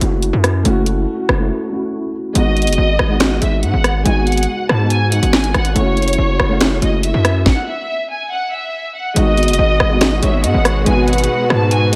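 A dark, boxy concert grand piano, a heavy, saturated 808-style bass and a tape-warm drill kit with a knocking kick and sharp snare open this cold half-time drill excerpt at 141 BPM in G# phrygian, moving between F#m7 and G#m7 chords. A focused, distant violin section takes the melody from 2.4 seconds, and after a stop from 7.5 to 9.2 seconds, a breathy, flute-like synth lead adds a second line while a lush, biting symphonic string section holds chords in the background. The reverb-soaked mix feels dreamy, with the distorted bass and drums up front.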